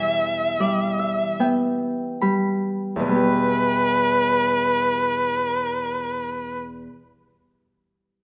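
Bathed in a moderate recital-hall reverb, this mournful, longing fragment of a Celtic slow air in E minor drifts in rubato 4/4 at 35-43 BPM, tuned to A4 = 438 Hz, as a close, warm, bowed erhu sings a smooth, even melody with vibrato and portamento over a ringing, fingerpicked Celtic harp that adds a fill while the pace slows through the first 3.0 seconds.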